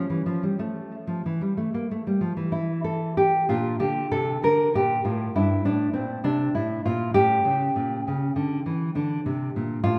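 A solo nylon-string guitar, thumb-plucked with the warm tone of fresh strings and placed up front, carries this solemn, grave baroque-style classical dance in 12/8 at a rubato 60-68 BPM counted in dotted quarters, ranging from G2 to Bb4. Tape echo trails its notes, and a wet recital-hall reverb surrounds the instrument as the harmony moves from A to a new phrase on Bb at 3.5 s, then through Gm13 and A7 before settling on D5 at 8.9 s. The fragment is cut from a longer piece.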